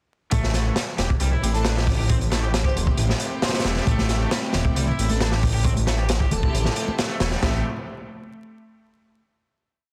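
A dense, heavily limited master with light reverb and vinyl crackle frames this swaggering, raw breakbeat piece at 135 BPM in A minor pentatonic, riding a single Am7 drop from 0.3 seconds until a final chord at 7.4 seconds. A crunchy, saturated breakbeat kit with dark cymbals and a tight kick sits up front beside a deep, rumbling detuned saw bass playing long gliding notes, while an overdriven, double-tracked garage guitar repeats a 32-step riff through dub echo. In the background sit sparse echoing stabs from a bright, earthy chamber string section, short phrases from a dreamy lead with chorus, vibrato and portamento, and a damped, high-tuned conga loop that enters at 4.0 seconds.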